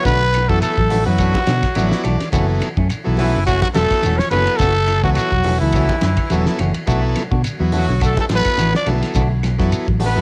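Afrobeat with an intense, driving feel, this short home-recorded clip, cut from a longer piece, sits in a small room and carries the soft grit of cassette tape on several parts. A growling, bright trumpet leads up front with light vibrato, while a raspy, punchy tenor saxophone carries a forceful second line further back. A buzzy vintage combo organ supplies the accompaniment and adds a fill from 1.5 to 2.3 seconds, as a clean hollow-body semi-hollow guitar plays stabs and a dark, slightly broken-up guitar fingers very quiet arpeggios underneath. The fingered electric bass is round and prominent alongside a cloth-damped, thuddy drum kit with a fat snare, tight kick and dark, rolled-off cymbals. Grainy shekere, woody claves and thin-skinned, hard-handed congas fill out the percussion at a low level as the harmony moves from Bm7 to F#m7 and back.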